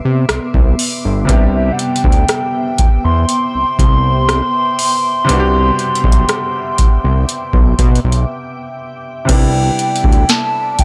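Dreamy and smooth, this contemporary R&B excerpt moves at a slow 60 BPM in 4/4 with a straight feel, resting on a Cmaj9 chord in C major. A clear, intimate baby grand piano plays accompaniment from the start, its action noise audible, while a glassy, ethereal FM pad holds sustained chords, softened by ensemble chorus and its own built-in reverb. A fat, detuned analog bass sits up front with a filter sweep, and a booming analog drum machine brings a deep kick, crisp snare, metallic hats, rim click and crash cymbal, its sound re-recorded in a small room. At 1.3 seconds a hollow, woody clarinet-like synth lead takes the melody, warbling with vibrato, chorus and tape echo over a sub octave. A break arrives at 8.3 seconds before a new section begins at 9.3 seconds, and the overall mix stays dry.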